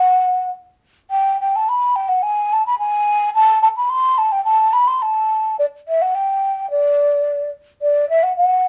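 A hollow wooden flute opens the fragment and carries it alone from 0.0 to 8.7 seconds. This is festive, jolly alpine folk in G major and 2/4 time, with a nominal tempo of 108 BPM taken with a loose, rubato feel. The flute sits between D5 and C6, its tone mellow and airy, with a soft attack and vibrato. It sounds up front, yet with a distant quality. A moderate studio ambience surrounds the instrument, and the tuning sits a touch low at A4 = 439 Hz. The passage forms a single section of a longer piece.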